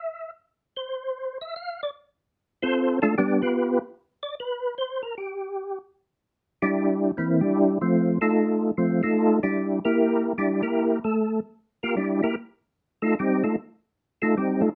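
Jazz with a greasy, soulful swing: a solo percussive tonewheel organ carries the whole excerpt alone, its mellow, round tone sitting up front through a slow rotary speaker and chorus vibrato, with third harmonic percussion giving each note a clean click. The harmony moves from Dm7 to G7, breaks for a moment with the chords dropping out at 4.7 seconds, then resumes on C9 and winds through F9 and Gm chords back to F9. Light reverb and a dark production frame the organ's playing, which spans from E3 up to F5.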